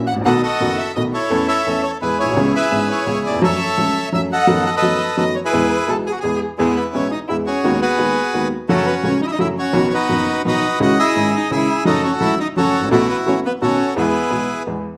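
Playful and nostalgic, this brief tango excerpt in a rubato triple metre sets a reedy, dark bandoneon melody up front, close and dry, over a clear, woody upright piano accompaniment that sounds worn and slightly detuned. A single bowed violin adds a second line with vibrato, portamento and a soft attack, its smooth top giving an expressive warmth, while moderate large-studio reverb frames the trio. The harmony settles into a home key from 6.6 s, moving through minor-chord turns before resolving at 14.0 s.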